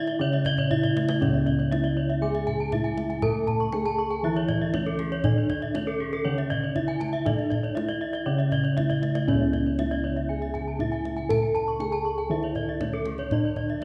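Set in a moderate concert-hall reverb, this brilliant, shimmering Balinese gamelan passage, cut from a longer piece, is led by a mellow, soft bronze metallophone melody struck with padded mallets, its paired tuning producing a shimmering beat. Two metallophones ring out arpeggios with horn mallets: one bright, close-miked, dry and full, the other boxy. A lower metallophone accompaniment plays until 9.3 s. Up front, round, beating bossed gongs carry the bass, while a tight kendang played with hard hands adds percussion and drum fills at 0.6 s and 8.9 s.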